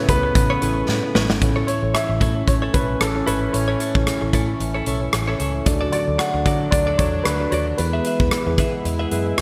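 Nostalgic and uplifting, this short excerpt of 1980s-style pop with a light swing carries a concert grand piano melody over mellow tine electric piano chords, a round, foam-muted fingered bass, and a big, punchy rock drum kit sitting up front with hi-hat, kick, rim click and snare. A clean, scooped electric guitar riff with subtle chorus and delay and a bright, evolving sawtooth pad with chorus in the background fill out the arrangement. A drum fill from 0.9 to 1.4 seconds leads into the main passage, and the chords move from Aadd9 to D and E under a lush hall reverb and glossy digital production.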